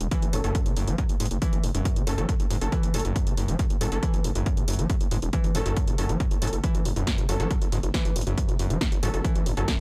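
A heavy, overdriven electronic kick sits up front and drives this relentless, industrial slice of peak-time techno in a straight 4/4 metre. Beneath it, a gritty synth bass built from square, sawtooth and sine tones with oscillator sync holds low, sustained and saturated, pumping against the kick. A squelchy, resonant acid bass carries the riff with short filter-plucked notes, thickened by lush chorus and analog delay and also pumping with the kick. A punchy, overdriven snare and hi-hat fill out the layered drum kit. From 0.3 seconds, an aggressive, thick rave stab of detuned unison saws adds decaying hits coloured by chorus, reverb, cassette tape and analog delay. The whole section, cut from a longer piece, rests on a single minor chord and has a dry hardware sound edged with transformer saturation.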